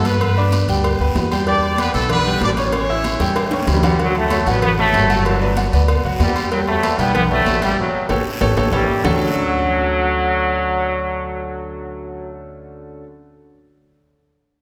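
A straight 4/4 salsa groove at 190 BPM drives this sunny, danceable excerpt in D major. High-tuned congas hit with hard hands ring in the background, alongside very quiet, tight cowbell and bongos, metal-shell agogo bells and timbales, and a raspy guiro. Up front, a woody, thumpy pizzicato upright bass with gut strings anchors the groove, while a bright vintage grand piano with long sustain accompanies the chords from G through Em7 and A7 to Dmaj7 and Gmaj7. A clear, punchy horn section with a smooth top carries the tight pop-style melody until 3.6 seconds. During a drum fill, a brilliant trombone section takes over at 3.7 seconds, up front with vibrato and a soft attack. A band accent arrives before the percussion drops out at 9.1 seconds, leaving bass, piano and trombones in a wet concert hall reverb.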